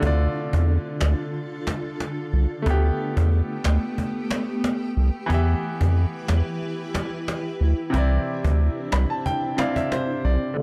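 Bouncy and sultry, this dancehall excerpt sits in a dark, warm small room as a deep, thick saturated sub bass holds the front beneath a bright, polished concert grand piano filtered into accompaniment and a cloudy, evolving granular pad with slow-attack sustained chords. Soft-handed cajon adds woody, compressed hits with faint snares, while the chords move from Dm through Gadd9/D and Em to Cadd9. The piano closes with a fill from 8.6 s to 10.6 s.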